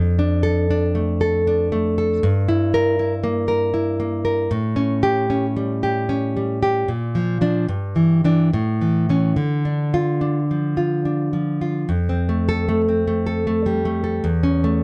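This romantic solo classical guitar piece, cut from a longer work, has a melancholic, wistful mood. A single fingerpicked nylon-string guitar carries everything, its tone full-bodied and deep, placed up front and heard through close, detailed microphones with a touch of light reverb. The tempo sits between 70 and 81 BPM in 3/4, played with a flexible rubato feel in D minor, and the guitar ranges from E2 up to Bb4. The harmony moves from Dm/F through Edim/G and A7, then passes through Bb, Em7/G and A before settling on Dm at 9.4 seconds. A new section opens at 11.9 seconds on F and closes on A/E.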